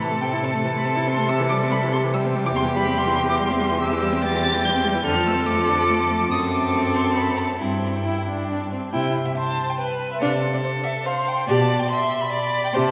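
Lively and cheerful, this quick classical-period string quartet movement in 3/4 at 142 BPM settles into C major from 3.8 s, with a rich, up-front first violin carrying a focused, vibrato-laden melody over a warm second violin line, a clear, close viola accompaniment and a smooth, even cello bass, all bowed by single players and bathed in the long, wet reverb of a church, with the second section arriving at 8.9 s in this brief cut from a longer piece.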